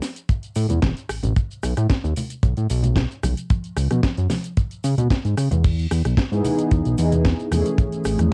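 A fat, detuned analog bass sits up front from 0.6 seconds, its sawtooth and square-wave tones roughened by ring modulation and a filter sweep, driving this sleek, sensual nu-disco excerpt over chords moving from A5 through B7(no3), C#m7 and Emaj7 to Amaj7. A tight, dry kick punches beside it, while a layered electronic house kit with a cracking snare, metallic hi-hats, rim clicks, cabasa and crash cymbal carries a tape-softened grain, and bright maracas and soft-handed congas sit in the background. At 6.3 seconds a round, dark synth brass enters, treated with chorus, phaser and sidechain pumping, all captured in a nearly reverb-free home cassette recording.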